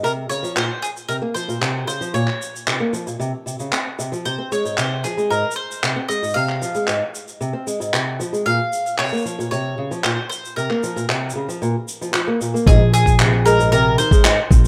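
A fingerpicked old ladder-braced acoustic guitar plays dark, boxy arpeggios under a bright, picked mandolin melody with plate reverb and delay, while shaker and handclaps with a rolled-off top keep a soft pulse in this delicate, intimate folktronica excerpt in Bb minor at 114 BPM, until at 12.7 s a woody pizzicato upright bass and a muffled, thumpy, pitched-down electronic kick drum enter over an Ab/Bb chord, all in a rough home demo mix.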